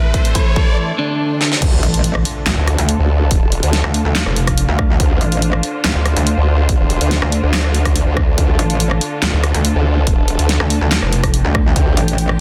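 Heavy, chaotic wobble dubstep in a half-time feel, cut from a longer piece, opening on a short build-up where a clean, picked electric guitar with phaser and dub echo plays a brief melody over a riser and swell, drum fills, a background string section with sidechain pumping and a blurred granular pad. At 1.6 seconds the drop lands with an impact as a saturated, formant-filtered wobble bass takes over up front, joined at 1.8 seconds by a second, metallic, FM-based and aggressive wobble bass, both with chorus and overdrive. Underneath them sit a punchy electronic kick and a big-room dance kit with a huge soft-clipped snare, handclaps, hi-hats and crashes, all in a dense, heavily limited master with light digital ambience.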